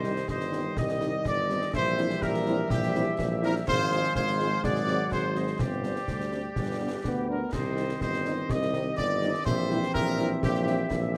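In a straight 2/4 at 124 BPM, this stern, martial military-style march for wind band in C minor sets a clear, up-front trumpet section on the melody over concert snare drum, concert bass drum and clash cymbals with dark cymbals, while a smooth-topped woodwind section carries a second line with light vibrato. A mellow, very quiet French horn section adds accompaniment, the trombone section holds sustained chords in the background, and a present tuba anchors the bass, all playing throughout this 11.2-second cut from a longer piece. Close, detailed microphones sit in a moderate recital hall, with harmony moving from Cm through Fm/Ab and Ab7 to Gsus4 and G before returning to Cm at 7.5 seconds.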